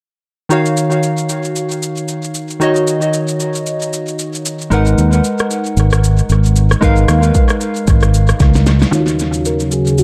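Round, dark fingered electric bass stands out most in this hypnotic, late-night amapiano excerpt, entering at 4.7 seconds and sitting up front in Eb minor at 114 BPM with a swung sixteenth feel. Warm analog keys carry the accompaniment from the start, their detuned square, sawtooth and triangle tones shaped by chorus, low-pass filtering and tape echo as the chords move from Ebm9 to Abm9. A deep house drum kit plays alongside them, with a deep kick, fat snare, rim click and shaker touched by tape echo, and a drum fill arrives just before the change at 8.9 seconds. There a filter sweep opens a new section, bringing in an airy, breathy pad with a noise layer, slow attack and sidechain pumping as the harmony returns to Ebm9. A gentle, keys-like FM lead with phaser, vibrato and chorus slips in for the final moments, all set in an echo-heavy mix with light reverb.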